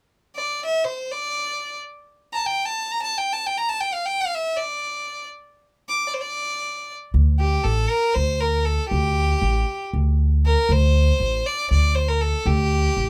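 Hypnotic and longing, this Turkish excerpt opens with a single bowed violin carrying the melody, its clear, earthy tone colored by light vibrato and set up front. At 7.1 seconds a pizzicato upright bass joins beneath it, its woody, dark steel-string voice adding a low foundation. A light reverb surrounds the sound.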